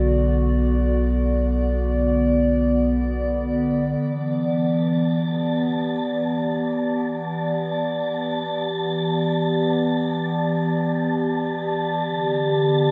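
A warbling, nostalgic tape-like pad with chorus and shimmer reverb sustains chords from Bm through Em7 to Dsus4 in this reflective, melancholic free-time ambient excerpt in E minor, over a deep, round sub bass that holds until 4.0 s, before an airy, breathy wind-like noise texture enters at 4.5 s, set in a huge, dark reverberant space.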